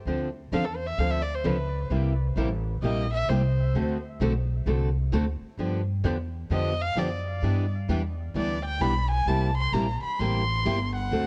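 Worn, warbling old-tape sound with cassette pitch drift and light reverb wraps this charming, swinging stretch of acoustic string swing in C major at 130 BPM, cut from a longer piece. An up-front upright bass gives a woody, thumpy pizzicato pulse on gut strings, while two picked steel-string acoustic guitars in plate reverb accompany: one dark and concert-toned, the other a fresh-stringed dreadnought sitting in the background. From 0.5 s a single bowed violin takes the melody up front, nasal and boxy, with expressive vibrato and portamento through plate reverb and analog delay.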